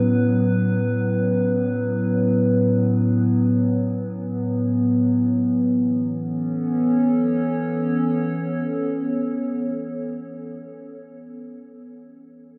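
Drenched in a huge ambient reverb that lingers for about 8.2 seconds, this recording rolls off all its upper sparkle, leaving a soft and rounded space. It is an ambient piece in free time, a short fragment cut from something longer, and its mood is luminous and serene. The only voice is a dark, warbly, tape-like pad held up front, its detuned square and triangle tones blurred by chorus and its own reverb into a nostalgic, lo-fi glow. Slow attacks and long releases let its sustained chords bloom and hang, spanning a full-bodied range from A2 up to C#5. The harmony rests on Bsus2 over A at the start, then settles onto Aadd9 at 5.5 seconds, and the pad sounds throughout until 10.8 seconds.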